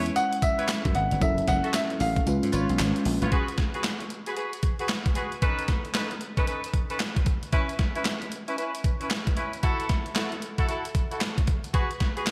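A confident, punchy new jack swing passage at 114 BPM in F# dorian opens with a natural-toned baby grand piano melody over worn, slightly out-of-tune tine electric piano chords, tight vintage jazz-style horn stabs with light vibrato, and a bright, foam-muted thumbed slap bass up front, with slapback echo on the keys and horns. An up-front, thumpy, tape-tinged 12-bit drum machine with handclaps, hi-hat, tambourine, kick drum and a medium-tuned snare drives the swung 16ths, its kick muted between 2.3 and 3.3 s, while a hollow group handclap sits barely audible underneath. By 3.3 s both pianos and the bass have dropped away, leaving the horns and drums over chords such as G#m7 and B9 in a lush hall with a big arena sound.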